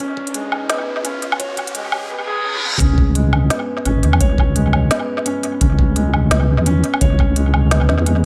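A felt-muted upright piano opens this dark, spacious half-time drum and bass at 171 BPM in C# minor, its soft, mellow arpeggios roughened by vintage 12-bit sampler grit and dub echo. Beneath it sits a deep, detuned wobble bass with chorus, placed up front, while a riser and reverse cymbal build through a filter sweep. A knocking electronic kick arrives at 0.2 s and an overdriven organic electronic kit with a woody snare, crisp hats, toms and woodblock joins it, leading a drum fill into the drop at 2.8 s, where the harmony lands on C#m within an echo-heavy mix of light reverb and digital ambience.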